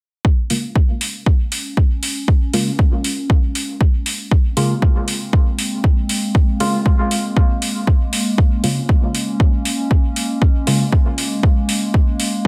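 Hazy and hypnotic, this dub techno excerpt moves at 118 BPM in a straight 4/4, settled on a single Bb minor seventh chord. A deep, overdriven electronic kick drum sits up front from 0.2 seconds, joined at 0.5 seconds by a metallic, overdriven hi-hat that is also placed forward in the mix. At the same moment a soft, mellow chord stab enters, its blend of triangle, sawtooth and sine tones shaped by a fast attack and decay, coated in chorus and phaser, trailing dub echoes, and carrying a filter sweep that keeps it evolving until it stops at 10.8 seconds. From 1.0 seconds a warbling, lo-fi pad of detuned square and triangle waves holds sustained chords at a low level, its slow attack and long release giving a nostalgic, tape-like haze wrapped in chorus and its own reverb. Both the stab and the pad carry sidechain pumping, and the whole piece sits in a digital ambience.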